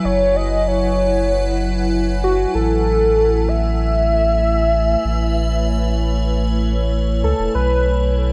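A velvety synth lead carries the melody in this glitchy, playful IDM fragment. Its smooth, wave-folded tone blends sawtooth, triangle and sine shapes, and chorus, vibrato and a tape echo color its notes. Alongside it, an icy glass pad holds sustained chords that sit quieter than the other parts. The pad is airy and crystalline, with detuned unison voices, a noise layer, a moving notch, built-in reverb and the grit of a vintage 12-bit sampler. A round sine sub bass sits up front with deep, sustained notes and a fast attack, while the harmony moves from F#7(no3) to Amaj7 at 2.5 seconds, the chords end at 7.5 seconds and the lead stops at 8.1 seconds. Light reverb frames a dark, warm production.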